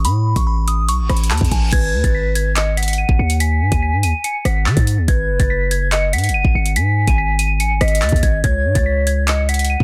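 An ominous drill excerpt opens with a delicate, tinkling FM tine bell playing the melody high above a punchy, heavy 808-style bass and an electronic drum kit with a knocking kick and metallic hi-hats, set at 143 BPM in a half-time feel in G# phrygian. The bell is bright, colored by chorus, phaser, low-pass filtering and tape echo, while the sine-based bass hits with a fast attack and decays, sitting up front alongside the tape-warmed kit of kick, hi-hat, handclaps, rim clicks and crash. A reverse cymbal leads into the second section at 1.1 seconds, and at 1.7 seconds a hollow, woody clarinet-like synth lead enters as a second line, soft and mellow with vibrato, chorus and tape echo. The harmony moves from Asus2 to G#m, settling on a bare C#5 at 8.4 seconds, keeping the menacing mood intact. The digital ambience and dense, heavily limited master give the whole thing a loud, modern sheen.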